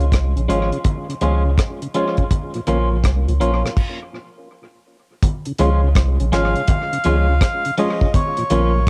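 A 4/4 groove at 82 BPM, swung on the sixteenths, drives this sunny, uplifting roots reggae excerpt in D-flat major, moving between Db and Bbm. Up front, a dry acoustic drum kit with a tight kick, hi-hat, rim click and crash cymbal carries a tape-worn cassette character and analog delay, joined by a round, sine-like sub bass with a fast attack and tube saturation. Ringing, high-tuned vintage congas and a boxy concert grand piano playing stabs, its action noise audible, sit in the background, while a twangy, compressed clean electric guitar adds accompaniment through spring reverb and tape echo. A dark, lightly overdriven tonewheel organ fills the middle with chorus vibrato, a slow rotary speaker and analog delay. The groove breaks for a stop at 3.8 seconds, and at 6.3 seconds a reedy, breathy melodica takes the melody in the foreground, colored by cassette tape and tape echo. The mix carries light reverb and the character of a home recording on cassette.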